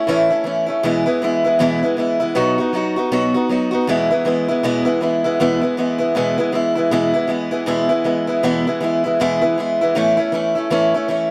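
Lightly reverberant and up front, this rowdy, upbeat rock fragment cut from a longer piece features a lone picked acoustic archtop guitar with woody, boxy old strings and tape echo, playing alone from 0.0 to 11.3 s at a swung 158 BPM in 4/4 and E major, tuned to A4 = 442 Hz, moving through A, E and B chords before a new section arrives at 3.9 s and the harmony returns to A at 10.0 s.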